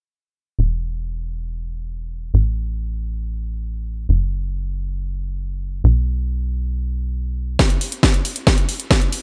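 A tight, dark sequencer bass drives this euphoric, emotional uplifting trance passage in F# minor at 137 BPM, its detuned sawtooth, square and triangle tones snapping with a fast-attack filter pluck, tube saturation and sidechain pumping from 0.6 seconds. At 7.6 seconds the bass stops and a build-up begins, with an overdriven, punchy analog kick and a layered techno kit of hi-hat and cracking snare playing a drum fill. The kit carries low-pass filtering on its snare, hats and large-room sound, and the dry, up-front mix has little reverb.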